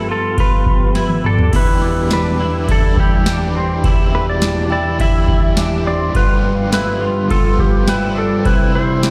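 A big studio reverb fills this dream pop excerpt, which sounds as if it were played over a large sound system in a bare room. It moves at 104 BPM in a straight 4/4, with an ethereal, floating mood, passing from G7 to Em7 and back before landing on C near the close. A twangy lap steel carries the slide melody through tape echo, while a mellow tonewheel organ holds flute-like chords with key click and vibrato, coated in lush chorus. A clean, bright electric guitar picks arpeggios through chorus and echo, and a worn celesta adds delicate, bell-like notes that are very quiet and slightly out of tune. The booming analog drum machine sits up front with a deep kick and crisp snare, entering at 0.4 seconds and playing a fill at 1.0 seconds, and a crunchy, double-tracked overdriven guitar joins at 1.5 seconds with tremolo.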